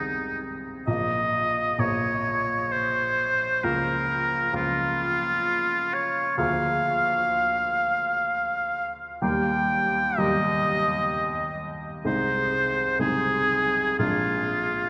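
Romantic classical music for oboe and baby grand piano in an unhurried, rubato triple metre, with a warm, serene mood: the up-front oboe sings the melody in a clear tone with light vibrato while the natural-sounding, short-sustained piano accompanies beneath it, both parts playing throughout this brief fragment of a longer piece and bathed in the long, wet reverb of a cathedral-like space.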